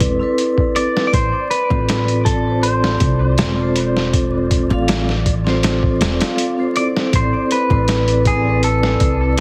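A bright, twangy clean electric guitar carries the melody up front from 0.8 s, roughened by vintage 12-bit sampler grit and tape echo, in this dark, melancholic trip hop fragment cut from a longer piece. Beneath it, a metallic, ringing vibraphone with tremolo and a woody pizzicato upright bass with gut strings move from Amadd9 to F and back. A gritty, pitched-down boom bap sampler-style kit with a thumpy kick and a small-room character drives the groove, while a breathy, wind-like tuned noise layer sits in the background, all wrapped in a heavily compressed radio sound with vinyl crackle and light digital ambience.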